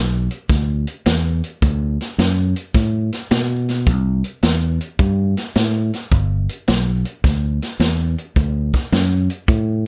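Soulful and swaggering, this electric blues shuffle in G major moves at 107 BPM in 4/4 with a 67% swing on the eighth notes. A fingered electric bass, dark and round, sits up front from the start, and a vintage drum kit with a punchy kick, medium-tuned snare, hi-hat and a rolled-off top joins at 0.3 seconds. Light reverb gives the brief cut from a longer piece a natural studio-room feel.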